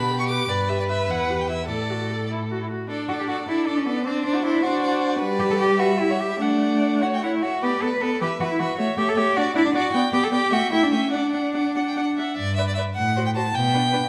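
A 6/8 pulse of dotted quarters at 96-107 BPM, stretched with rubato, carries this cheerful, lively classical-period string quartet movement in D major, cut from a longer piece: a smooth, even first violin with rich vibrato sings the melody over a soft-edged, distant second violin line that glides with portamento and an expressive viola accompaniment that also slides between notes, while a clear, up-front cello anchors the bass, each bowed by a single player and bathed in the wet reverb of a recital hall.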